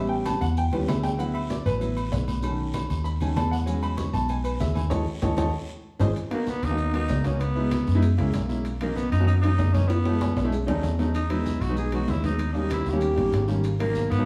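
A clear, up-front baby grand piano opens this driving, sultry Afro-Cuban jazz excerpt at 193 BPM, taking a solo until 6.2 s over a dark, round picked electric bass, bright damped congas, ringing timbales and agogo bells, a raspy guiro and grainy maracas, before a breathy, growling tenor saxophone takes the melody at 6.3 s with scooped notes, the whole set in a wet large studio reverb heard from further back in the room.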